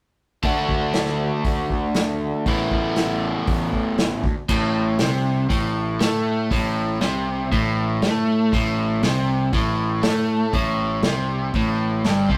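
Up front, a double-tracked, overdriven electric guitar carries the riff in this indie rock excerpt, its picked tone compressed and warm as it ranges from G2 to F#4. The mood is wistful yet upbeat, moving at 119 BPM in a straight 4/4. Beneath it, a fuzz-laden picked electric bass adds a growly, punchy low end between G1 and A2, while an acoustic drum kit played with bundle sticks brings a medium-tuned snare, punchy kick, hi-hat and crash cymbal close to the listener. All three parts play together from 0.4 to 12.4 seconds, moving from D to Asus2, a brief break in harmony at 4.2 seconds, and then a rootless Gsus4 as a new section begins at 4.5 seconds. A moderate stone-room reverb and tube saturation give the whole thing the rough feel of a rehearsal-room take, cut from a longer piece.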